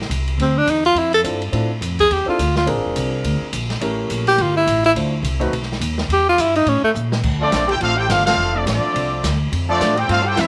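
A swinging 4/4 pulse at 210 BPM drives this dramatic, brassy big band jazz excerpt in D minor, cut from a longer piece. Pizzicato upright bass with a woody, up-front tone and an open jazz drum kit with dark cymbals, a medium-tuned snare and a boomy kick hold the groove throughout. A breathy tenor saxophone solo carries the melody from 0.4 seconds, its whispered subtone, soft attack, scooped notes and vibrato sounding close and intimate, with a slapback echo on its line. A warm grand piano accompanies the sax briefly in the middle register, and a drum fill at 7.0 seconds hands the tune to the brass. From 7.4 seconds a clear trumpet section takes the melody with light vibrato, backed by a bright, tight trombone section on a second line, and the band hits an accent at 8.2 seconds, all set in light studio reverb.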